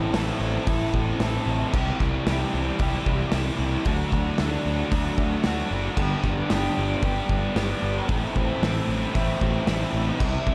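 Wistful and dreamy, this short cut from a longer rock piece leans into shoegaze and dream pop at 113 BPM in a straight 4/4. A biting, overdriven electric guitar carries the riff up front from the very start, picked and double-tracked, its lush chorus giving it a shimmering width. Beneath it, a fuzz-laden picked electric bass sits low and round, overdriven and dark in tone, holding the bottom end throughout. A loose indie drum kit joins at 0.1 seconds with a punchy kick, a medium-tuned snare, hi-hat and dark crash cymbals, recorded in a pumping studio room. The chords move from Am through C, D and G before returning to Am, all within a small room ambience and a dusky, warm production.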